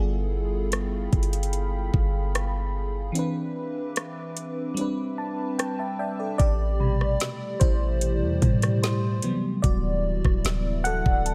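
A straight 4/4 groove carries this sensual, late-night contemporary R&B excerpt, built on a smooth electronic drum kit of knocking kick, woody snare, rim click and metallic hats, over a boomy, sine-based 808-style bass that sits up front. A lush, warbling FM electric piano with a soft pad layer and chorus plays through extended chords, adding a fill at 4.8 seconds during a break and then a solo from 6.4 seconds, while a moody sawtooth ambient pad with a slow attack and built-in reverb sustains beneath. A delicate, bell-like celesta with digital delay joins in the background at 6.8 seconds, and the overall sound is dry and close.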